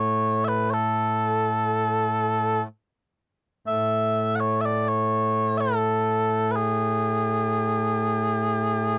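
A mellow, sweet tone of small bagpipes opens this short Celtic folk excerpt, played solo and up front in A major at a slow, rubato 63 BPM in 3/4. The continuous, vibrato-touched melody ranges from A2 to F#5, moving into a new section at 3.6 seconds and carrying a nostalgic, wistful mood. The sound is dry and close, in the manner of a 1970s studio recording, with little reverb.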